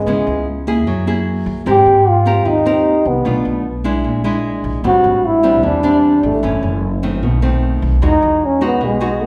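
A straight 4/4 bossa nova groove at 151 BPM carries this sophisticated, sunny fragment. A mellow, whispered trombone sings the up-front jazz melody with light vibrato and a soft attack, over fingerpicked nylon-string guitar with a small, woody, old-strings sound and a thumpy pizzicato upright bass, all three playing throughout the 9.3 seconds, in the wet reverb of a recital hall and chords moving from C#m7 to Emaj9.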